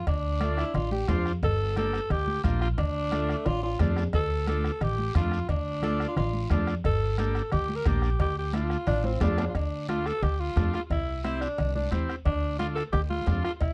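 Passionate and fiery, this fragment of a cumbia in D minor moves briskly at 177 BPM in a straight 4/4, captured as a dry, close studio recording with a 1970s feel. Up front, a raspy, gritty alto saxophone carries the melody with vibrato and a slapback echo, joined by a clear tenor saxophone with a distant, roomy sound on a second line that drops out at 6.8 seconds and returns at 8.9 seconds. A woody upright bass, played pizzicato and sitting prominently in the mix, anchors the low end alongside a soft-beatered bombo. A buzzy, vintage combo organ with light vibrato fills in the harmony as the chords move among Dm, Gm and C. Damped congas, ringing metal-shelled cowbell and timbales, and a raspy guiro sit in the background, with drum fills adding lift before a new section begins at 9.6 seconds.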